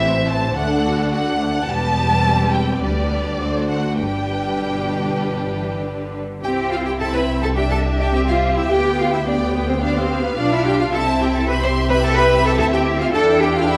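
A full string orchestra opens together in this lively, cheerful classical-period movement, taken quickly at 107 BPM in 4/4 with a rubato feel, in G major before shifting to C major at 6.4 s. The first violins carry the melody with a soft-attacked, expressive tone and a smooth top, and the second violins add a clear, close line. Beneath them the violas supply rich accompaniment, the cellos give a lush bass, and the focused double basses sit up front, with vibrato throughout and the whole ensemble set in a reverberant recital hall.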